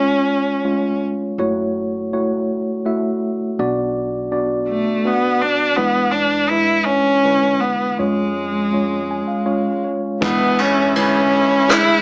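Reflective and melancholic, this acoustic folk-pop ballad unfolds at an unhurried 82 BPM in 3/4 time, cut from a longer piece. A worn, slightly out-of-tune tine electric piano carries the accompaniment up front from start to finish, its tone lightly overdriven through built-in speakers. A clear, smooth bowed cello sings the melody with even vibrato, sounding a brief phrase at the opening before returning at 4.7 seconds to stay to the end. A woody pizzicato upright bass with steel strings sits in the background from 1.4 seconds as the harmony moves through F#m7, Bm and E7. At 10.2 seconds a dark chamber string section adds soft-attack sul tasto chords in the background while a vintage brush drum kit joins with a punchy kick, dark ride cymbal and rim clicks, its top rolled off. The whole mix has a small-speaker character and moderate studio reverb.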